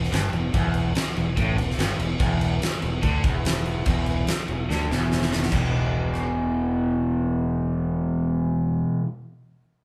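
Lightly reverberant and captured as a band playing live in one room, with lossy compression artefacts, this raunchy, swaggering blues rock and southern rock power trio excerpt in straight 4/4 sets a crunchy, double-tracked, picked guitar riff up front beside a growling, overdriven fingered bass and a huge arena drum kit with a punchy kick and fat snare, whose fill from 4.7 s runs up to the harmony's move from Em to E5 at 5.5 s before the drums stop at 6.2 s.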